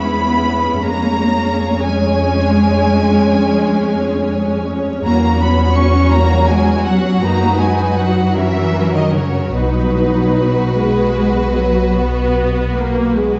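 Up-front bowed double basses anchor this lyrical, rubato excerpt of a slow romantic movement for string orchestra in B major and 12/8 at 48-57 BPM, where a smooth, vibrato-rich first violin section sings the melody over a clear, focused second violin line, lush violas, and cellos set in the background, all softened by a moderate scoring-stage reverb and a dark, vinyl-crackled production that settles onto a B chord at 9.5 seconds.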